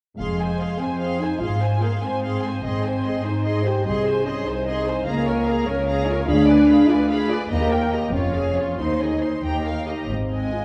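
Classical orchestral music in a rubato 6/8, this short passage cut from a longer piece feels restless and urgent, shifting from a minor home toward a brighter major colour about 5.1 seconds in. A focused, vibrato-laden first violin section carries the melody high above a second violin line that is soft-attacked and expressive with a smooth top. Clear, intense violas fill in the accompaniment while a dark French horn section, the most prominent voice in the blend, holds sustained chords up front. Underneath, lush cellos and smooth, even, distant double basses share the bass, and the harmony moves through a diminished chord before settling on a major resolution at 10.1 seconds. A wet, roomy reverb gives the whole ensemble a spacious scoring-stage glow.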